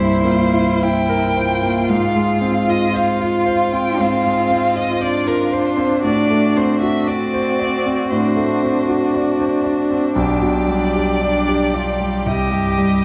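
Rubato and unhurried, the pulse stretches and settles in a slow 4/4, giving this brief excerpt from a longer classical movement for piano quartet a melancholic, elegiac cast. A rich, bowed violin carries the melody with smooth vibrato, heard at a slight distance, while a second violin, even and polished at its top, shapes a quieter inner line beneath it. A clear, focused cello adds its own second line with vibrato, also set back in the hall. The concert grand sits up front in the accompaniment, warm, intimate and natural, with deep bass, long sustain and audible action noise that brings the keyboard close to the ear. The harmony moves from C7 through Fm/Ab, D7/A and G/B before arriving on Cm at 12.3 seconds, all within a dark, warm production and a moderate concert hall reverb.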